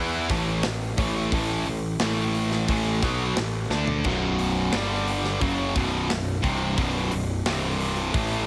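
Heavy and aggressive, this short heavy metal cut is driven by an up-front, high-gain guitar riff, double-tracked and bright, that moves through A5, B5, G5 and C5 power chords over a fuzzy, growly picked bass with an overdriven snarl. A tight acoustic metal drum kit enters at 0.3 seconds with a big-room, mid-forward sound, a tight kick, a medium-tuned snare and a rolled-off top on its crash and hi-hat. A drum fill at 3.7 seconds marks the turn to the B5 chord, and the whole mix stays dry, with little reverb.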